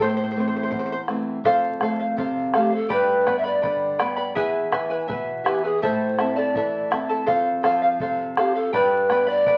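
A woody, hollow pan flute carries the melody from 2.6 seconds, its pure, straight tone marked by a crisp chiff and softened highs as it sits up front. This is a festive yet wistful piece of Andean folk in A minor, moving at 82 BPM in a straight 2/4 and cycling through Am, F, G and E. A bright charango opens the music with shimmering fingerpicked double strings, some doubled at the octave, and stays prominent as accompaniment. A small, fingerpicked nylon-string guitar fills in the low register beneath it, and a deep, dark bombo enters at 0.7 seconds with a close, dry thud. Wet studio reverb surrounds the ensemble, while the crackle of a very old 78 rpm record gives the whole sound an aged patina, and the passage is cut from a longer piece.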